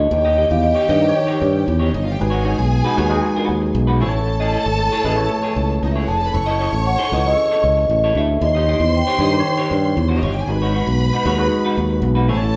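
Disco with a driving, danceable pulse in a straight 4/4, heard as a short cut from a longer piece. A bright, up-front fingered electric bass anchors the groove from the start. A worn, slightly out-of-tune tine electric piano heard through a combo amp and a clean, hollow-bodied semi-hollow guitar fill in the accompaniment. A rich, expressive violin section with vibrato carries a second line just after the opening. A mellow vibraphone played with soft mallets, ringing with a slow motor vibrato, sings the melody briefly at the start and returns around 6.1 seconds. The harmony moves through seventh chords such as D#7, G#m7 and Amaj7, and the band sounds as if playing live together in one room under a generous studio reverb.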